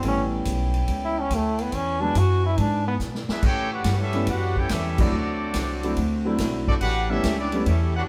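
Recorded in a moderately reverberant stone room with the band playing live together, this brassy, energetic big band swing fragment at 142 BPM opens with a bright, forceful trombone solo over warm concert grand piano, a mellow, tight saxophone section holding sustained chords, woody, thumpy pizzicato upright bass up front and a swinging drum kit with a punchy kick, until a drum fill at 3.0 seconds leads to a clear, smooth-topped trumpet section taking the melody at 3.3 seconds as the music settles into A major at 3.4 seconds, with a soft-attacked trombone section carrying a second line in the background and a band accent landing at 4.9 seconds.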